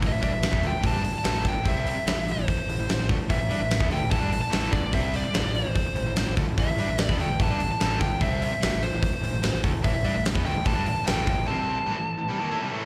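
A menacing, driving hard rock excerpt in A minor opens with a huge arena drum kit set up front, its fat snare, punchy kick and hi-hat pushing a straight 4/4 at 147 BPM. Two rhythm guitars sit in the background playing the riff: a bright, picked distorted electric guitar and a dark, hollow-body semi-hollow guitar, both with slapback echo. A growling fingered electric bass adds overdriven, direct-and-amped weight underneath, while a biting lead guitar carries the melody high above with overdrive, slapback echo and digital delay. The sound is that of a live gig heard through the venue's PA, with recital hall reverb around the band. At 11.5 seconds the bass stops and the drums drop out for a break, leaving the guitars playing on in A minor until the cut at 12.9 seconds.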